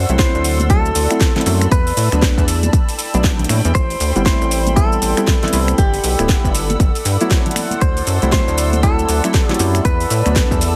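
A heavily compressed, radio-like sound colors this moody deep house excerpt, a short cut from a longer piece with a swung groove. A punchy, layered electronic kick sits up front, joined by a house kit of finger snaps, shaker, metallic hi-hats and a cracking snare, while soft-handed congas play in the background from 0.6 to 9.8 seconds. Up front, a rubbery, bouncy square-wave bass with a nasal, resonant filter pluck pumps against the kick, as do the dark, detuned chord stabs, which carry chorus and tape echo. Behind them sit a hollow, flute-like pad with ensemble chorus and a warbling, nostalgic lo-fi pad treated with chorus, phaser and reverb, both pumping softly in the background. Over this, a bright, twangy clean electric guitar, recorded direct and picked, plays a melody through digital delay as the chords move through D9, E7sus4, Am9 and Gmaj13.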